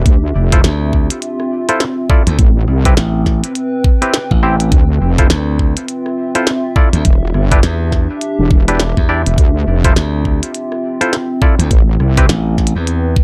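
A heavy, saturated wobble bass sits up front from the start, its detuned sawtooth and sine layers thickened with chorus, while a punchy, bright slap bass joins at 0.6 seconds. This is a swaggering, gritty glitch hop cut from a longer piece, built on a swung 4/4 groove and a chord cycle that moves from Dm9 through Am9 and Em7. A knocking, layered electronic kick drives the beat up front, with a glitchy kit of clicky hats, rim clicks and a tiny snare that sounds re-recorded in a small room. Percussive, stringy clav stabs enter at 0.5 seconds, carrying delay and sidechain pumping. Behind them, a warbling, nostalgic pad with a lo-fi, vintage tone and slow attack breathes with its own sidechain pumping, chorus and built-in reverb, under a light overall reverb.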